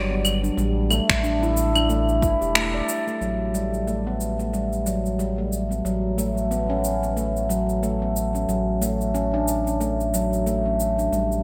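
Earthy and peaceful, this organic downtempo excerpt at 91 BPM in A mixolydian sets up-front, ringing handpan arpeggios with vintage 12-bit sampler grit, low-pass filtering and delay over a round sine sub bass with sidechain pumping, while overdriven electronic claves, cabasa and finger snaps with gated reverb sit forward in the mix, an electronic kick drum with a deep overdriven thump appears only from 1.1 to 2.4 seconds, a band accent lands at 2.6 seconds, and the harmony moves from G through A7sus4, Asus2 and Bsus2/A to Dmaj7/A under a bright 1980s-style digital sheen and a moderate plate reverb.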